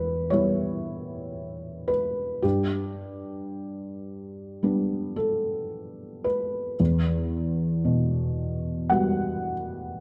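A felt-muted upright piano plays alone through this short excerpt of neoclassical minimalist piano, its soft, mellow tone placed up front with the action noise of the instrument clearly audible. The mood is reflective and intimate, moving at a slow 56 BPM in 4/4 with a rubato feel in E dorian. The notes have a short sustain and span from E2 to F#5. Harmony moves from E minor to G at 2.4 seconds, and a new section arrives at 6.8 seconds on an E minor add nine chord. A wet scoring-stage reverb surrounds the natural-sounding piano, and the overall production is dark and warm.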